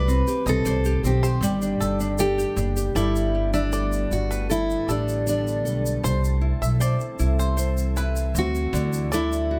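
A straight 4/4 pulse carries this unhurried acoustic pop passage, sunny and heartfelt in mood and cut from a longer piece. Up front, a full-bodied jumbo steel-string guitar fingerpicks the melody over a thumpy, woody upright bass played pizzicato on gut strings. A small nylon-string guitar adds warm fingerpicked accompaniment, while a twangy bluegrass banjo played with fingerpicks lays percussive arpeggios on top and a grainy egg shaker keeps time in a live room. In the background, a bright, glassy FM pad holds ethereal sustained chords with slow attack, long release, ensemble chorus and its own reverb. The harmony moves from C minor to Gadd9 at 1.4 seconds, and a new section begins at 3.0 seconds before the harmony arrives on C at 6.0 seconds and Dadd9 at 8.7 seconds, with a small room ambience around the ensemble.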